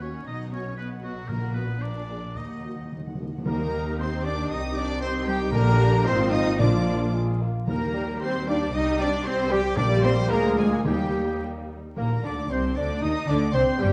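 Dark, vinyl-crackled sound and a reverberant recital hall frame this lively, cheerful excerpt from a quick classical-period orchestral movement in 2/4, played with rubato at 105-119 BPM and turning from Eb minor to Eb major at 3.5 s. A smooth violin section carries the melody over a lush second violin line, a clear, distant oboe, expressive violas, very quiet horn chords, and a bass of up-front double basses and background cellos, while hard-mallet timpani in the background add a fill leading into the major key. Pure-toned flutes enter at 3.4 s, and from 3.5 s a mellow clarinet, a soft-attacked bassoon and tight trumpet stabs join them to thicken the texture.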